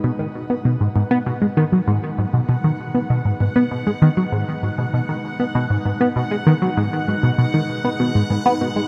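Expansive and hypnotic, this short fragment of ambient, sequencer-driven space music sits in a straight 4/4 on a single G# minor chord. Up front, a tight sequenced synth drives a low riff with a nasal, detuned sawtooth tone, its filter pluck and moving notch shaping each note's fast attack and sustained body, thickened by chorus and delay. Behind it, a phased analog pad holds sustained chords in the background, swirling and evolving through phaser, chorus and shimmer reverb as it fades in across the full 8.9 seconds. High above, a bubbling stepped-filter texture hovers on a single resonant note, its random filter steps sparkling with a bright, soft-attacked sheen and long release while it also fades in. The whole passage floats in a huge, wet ambient space with a reverb tail of 8.5 seconds.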